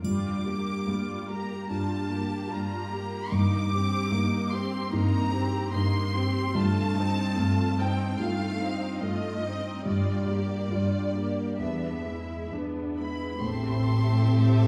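A felt-muted upright piano, a warm viola section and a dark cello section open this longing, moving cinematic film score in G minor, with a faint triangle for the first 1.7 seconds, as a lush violin section with vibrato sings the melody high above at a rubato 65-76 BPM through chords such as Gm7 and F7/G, while a mellow French horn section and a rich double bass section join near the close, at 13.0 and 13.4 seconds, alongside a smooth second violin line, all set back in a reverberant concert hall.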